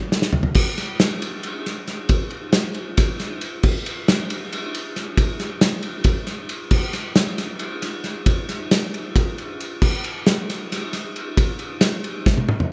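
A rough home-demo sound with light reverb frames this wistful, restless rock excerpt in a straight 7/8 at 272 BPM in eighths, where a loose, up-front acoustic indie drum kit in a pumping room, with a punchy kick, medium-tuned snare, toms, ride and crash, dark cymbals and a rolled-off top, opens on a fill from 0.0 seconds, drives the single section from 0.6 seconds and closes on another fill at 12.3 seconds.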